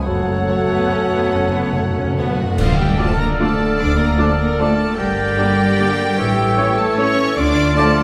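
A classical orchestral ballroom waltz in D minor, bittersweet and dark, sways in 3/4 at a rubato 136-162 BPM. A rich, focused chamber violin section carries the melody high above a close, lush cello section and double basses, while a smooth second violin section, a distant viola section, an airy, hollow flute, a clear oboe, a mellow clarinet and bassoon fill out the lines in the background, and very quiet French horns and trombones hold sustained chords. A timpani fill with calf heads opens the passage until 2.6 seconds alongside dark cymbal swells, clash cymbals and bass drum that carry on to 3.4 seconds. A band accent marks the turn to D minor, and a warm trumpet adds stabs from 3.0 seconds, all set in the wet reverb of a concert hall.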